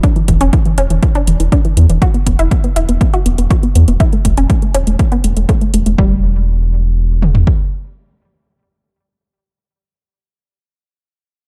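An up-front round analog bass, deep and sine-like with tube saturation and sidechain pumping, anchors this emotional, dreamy progressive house excerpt at 121 BPM in E dorian, sitting under a detuned sawtooth analog pluck that plays bright, chorused arpeggios with tape echo and a filter sweep until 6.0 seconds. A punchy, overdriven house drum kit of kick and toms, re-recorded in a large room, drives the straight 4/4 groove alongside metallic, overdriven electronic hi-hats that stop at 6.0 seconds, while the kit drops out at 7.6 seconds. The chords move from C#m/E through Esus2 and A5/E to Em in a dark, dry production, leaving the pluck alone until 9.8 seconds.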